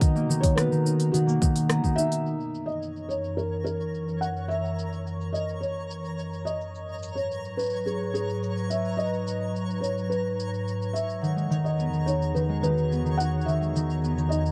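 Hopeful and pastoral, this folktronica excerpt carries a straight, steady pulse from start to finish. A soft, felt-muted upright piano sings the melody through tape echo, its boxy, intimate tone coloured by audible action noise. Beneath it, a warbling, nostalgic tape-like pad holds sustained chords with chorus, phaser and its own reverb, while an up-front concert harp rings out thumb-plucked arpeggios. A tight electronic kick punches only through the opening until 1.9 s, and an organic electronic kit with filtered, smooth hats, rim click and shaker keeps time throughout. A twinkling granular texture with octave-up shimmer enters at 2.9 s, and the airy, metallic vibraphone adds a second line at the start and again from 11.2 s, when the harp also returns, over chords moving from Bmaj7 through F#7 and G#m7 to Emaj7 in a dry, close 1970s-style studio sound with light reverb.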